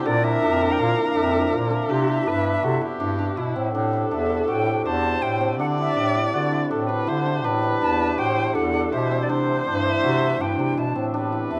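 Close, detailed microphones and a light reverb give this chamber excerpt an intimate, finely etched sound. Written in an uneven 5/4 with a straight feel, it moves in a playful, restless mood. A bright, airy concert flute carries the melody with vibrato and a soft attack, while a single dark viola plays a second line beneath it, bowed sul tasto with portamento and an expressive, smooth top. The hammered dulcimer spins shimmering, ringing arpeggios, and a clear bass clarinet, entering at 0.1 s, holds down the bass up front with a roomy, classical character. Further back, a mellow French horn section sustains tight chords with light vibrato. After an opening passage on Bb and Cmaj7, the music shifts at 3.7 s into a new section that moves through Am9, D7sus4 and C6 until the cut.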